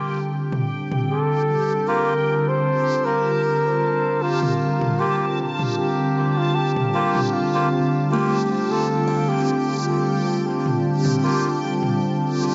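A lush hall reverb surrounds this hazy, meditative ambient dub fragment in G minor, whose top end stays soft and rounded, moving at an unhurried 77 BPM in a straight 4/4. Up front, a warm analog pad of detuned sawtooth tones holds sustained chords with a soft attack, shimmering under chorus and tremolo while a filter sweep runs across its whole length, and a reversed, granular backwards texture swells dreamily behind it. Overdriven electronic toms enter at 0.5 seconds, their hits trailing off in dub echo. A dark, veiled trumpet with a bucket mute carries the solo melody in a classical style with light vibrato, its echoes drifting after each phrase, while a reedy, nasal melodica adds breathy stabs in the background. From 8.1 seconds a buzzing kalimba joins with woody, ringing arpeggios plucked by thumbnail, also tucked back and echoing into the haze.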